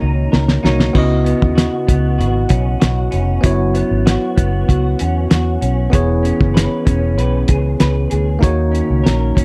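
This hazy, lonely piece of bedroom-flavoured indie pop opens on a bell-like tine electric piano, a twangy guitar and a round, foam-muted fingered bass, with the cloth-damped drum kit tumbling in at 0.3 seconds through a short fill. The kit is muffled and thuddy, with a fat snare, tight kick, dark hi-hat and splash, and a gritty, saturated edge that sits up front beside the punchy bass. Over them the electric piano rings clean and bright with a cassette-tape colour, while the picked guitar, slightly broken-up through a small old amp, shimmers with ensemble chorus and a warbly pitch drift. The chords move in a steady 4/4 from D#m7 through C#m11, F#7sus4 and E6 before returning to D#m7 at 8.4 seconds. The sound is dry and close, like a 1970s studio room with little reverb, and the excerpt ends at 9.4 seconds as it is cut from a longer piece.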